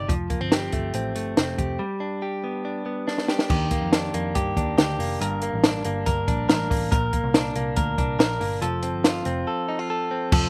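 A straight, steady 4/4 pulse drives this restless, bittersweet slice of jangly indie pop, cut from a longer piece. A compact cocktail drum kit sits up front with a punchy kick, a high-tuned snare, hi-hat and crash, all with a smooth, dusky tone. Beneath it, a vintage picked electric bass sounds foam-muted and round, with an amped, shadowy character. A clean, directly recorded electric guitar, also up front, plays compressed, warm arpeggios over chords such as Fadd9, G, Ebmaj7, Gm and Bb. A break arrives at 1.8 seconds, a drum fill runs from 3.1 seconds, and the music moves into a new section at 3.5 seconds. The sound is dry, recorded outdoors with little reverb.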